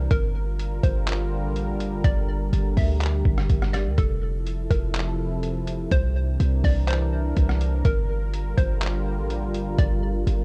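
Atmospheric cloud-rap hip hop in G dorian at 124 BPM with a half-time feel, this hazy, ethereal excerpt moves through Gm7, Fmaj7 and C9 over a dark analog pad of detuned sawtooth with a slow attack, chorus and sidechain pumping, while a hollow, warbling square pluck carries the melody through chorus and tape echo. Up front, a boomy 808-style bass with a fast attack and decaying sine tone anchors the low end, and a gritty, pitched-down sampler-style trip hop kit enters at 0.1 s with a thumpy kick, handclaps, hi-hat and rim click. The production is dry, dark and warm, with the drums and bass sitting well ahead of the quieter pad and pluck.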